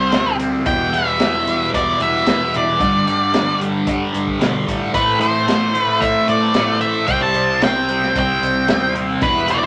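Mysterious and trippy, this psychedelic rock excerpt moves at 112 BPM in a straight 4/4, with a dark octave-fuzz lead guitar carrying the melody up front over a bright, double-tracked thick fuzz guitar riff with phaser, a round overdriven fingered bass, a very quiet buzzy vintage combo organ holding sustained chords, and a crunchy, gritty breakbeat kit with a punchy kick and high-tuned snare, all set in a wet club reverb as the chords move from C through Em, Gadd9 and Am before returning to C at 7.1 seconds.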